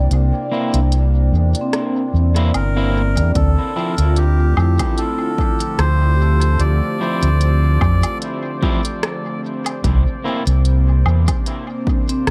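Ambient dub at 74 BPM in D minor, meditative and hazy, with a dark, round fingered electric bass up front beneath an airy, breathy pad with chorus and soft-mallet vibraphone arpeggios ringing through dub echo in the background. A bubbling stepped-filter texture floats in the opening seconds over hi-hat, rim click and woodblock from an organic electronic kit, while a slightly broken-up electric guitar adds echoed stabs. At 3.4 s a punchy, overdriven electronic kick enters as the harmony moves from C7 to Dm9, and a reedy, nasal melodica carries the melody from 2.5 to 8.2 s in this echo-heavy excerpt cut from a longer piece.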